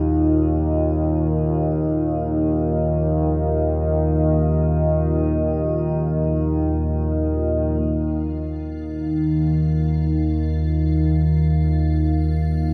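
Drenched in a cavernous cathedral reverb with a 6.3-second tail, this dark ambient drone drifts in free time, ominous and brooding, in a passage cut from a longer piece. An up-front, warbling analog drone of sawtooth and pulse waves rumbles low throughout, while a deep, detuned pad with a sub octave holds moody sustained chords through chorus, phaser and shimmer reverb until 7.8 seconds. At 8.3 seconds a faint, crystalline glass pad enters, adding an icy, airy texture with chorus and shimmer reverb over the drone.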